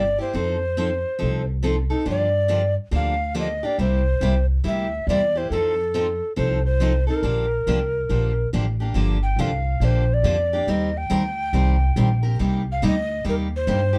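A swung 4/4 lilt drives this short, playful cut from a longer piece of acoustic string swing in the jazz manouche style, its eighth notes rolling with a relaxed bounce. A breathy, hollow alto recorder carries the melody with a soft attack and gentle vibrato, its wooden voice sitting up front. A picked steel-string acoustic guitar supplies bright accompaniment through the changes, while a pizzicato upright bass on gut strings gives a woody, thumpy foundation. All three play throughout, moving from an opening section built on dominant and minor seventh chords into a second part at 8.9 s that turns toward the minor. Light reverb and a dark, warm production give the trio a charming, intimate glow.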